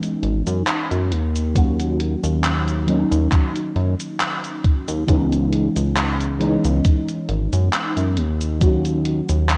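A slow 68 BPM vaporwave groove in 4/4 with a light 16th-note swing sets a woozy, nostalgic mood, carried by a gated 80s digital drum machine of cabasa, handclaps and hi-hat with gritty 12-bit sampler texture, joined at 1.6 seconds by a thumpy, up-front electronic kick. A glossy, saturated chorused synth bass enters at 0.2 seconds beneath a soft, round FM electric piano colored by phaser, ensemble chorus and analog delay, the harmony drifting between C#m9 and D#m7. The whole excerpt sits in light reverb with a worn cassette-tape quality and warbly pitch drift.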